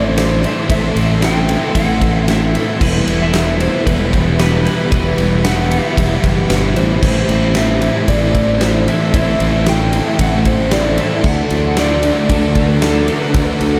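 Dreamy and melancholic, this shoegaze and dream pop rock excerpt pairs a dark, slightly broken-up lead melody on electric guitar through a small old amp, trailed by diffuse ambient delay, with a cloudy granular pad in the background, shimmering octave-doubled arpeggios from a very quiet twelve-string acoustic, a crunchy overdriven riff with reverse reverb, a murky fuzz guitar riff, an up-front bright fingered bass and a huge arena drum kit with punchy kick and fat snare entering at 0.2 seconds, all soaked in cathedral-like reverb.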